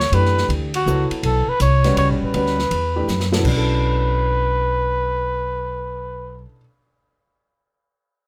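Spiritual and cool, this brief modal jazz cut swings in waltz time over a Bm11 chord, with a breathy, dark trumpet carrying the melody up front with light vibrato, a woody pizzicato upright bass, a clear baby grand piano accompanying with short sustain, and an airy jazz kit with dark cymbals and a boomy kick that plays a fill at 3.1 seconds and drops out at 3.6 seconds, all set in a small room.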